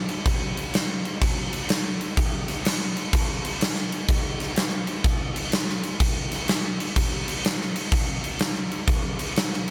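A driving rock groove at 125 BPM in 4/4 swings its eighth notes with a 65% lilt, giving the pulse a loose, rolling push. This gritty excerpt, cut from a longer piece, is carried entirely by a huge arena drum kit that enters at 0.1 seconds and plays alone through to 9.7 seconds. The acoustic kit sits up front in a hall with a pumping room sound, its boomy kick anchoring the beat beneath a medium-tuned snare. Bright crash cymbals ring over the top, adding sheen and bite. A light reverb wraps the performance, lending the drums a sense of space while keeping their punch close and immediate.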